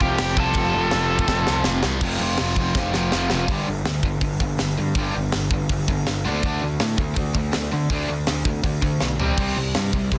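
Punk rock at 163 BPM in a straight, upbeat and rebellious 4/4, this cut-out passage opens with a biting lead guitar melody that drops out at 1.6 seconds, over background riffs from an overdriven electric guitar, a sludgy distorted guitar and a double-tracked sludgy partner that stops at 2.0 seconds, all driven by a growly fuzz-picked electric bass and an up-front, polished metal drum kit with bright cymbals, a high-tuned snare and a tight kick that fires fills around 1.3, 2.8 and 9.0 seconds, moving from F through G5, D5 and C5 in a dry, dense, heavily limited mix.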